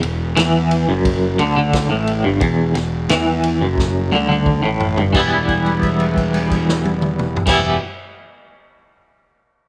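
The recording has a natural studio-room ambience, with the guitar sitting up front. This short, dark and trippy psychedelic rock excerpt moves at 88 BPM in 4/4 with a straight feel and rests on an E minor chord. A bright, twangy electric guitar plays a clean, picked riff between E2 and E4, compressed and double-tracked with tremolo. Underneath, a picked electric bass adds a round, overdriven fuzz tone, while an acoustic vintage drum kit with dark cymbals, a medium-tuned snare and a tight kick plays kick, snare, ride, crash and toms. A drum fill from 3.8 to 5.2 seconds leads into a new section where a held note carries until 7.5 seconds, just before the cut ends.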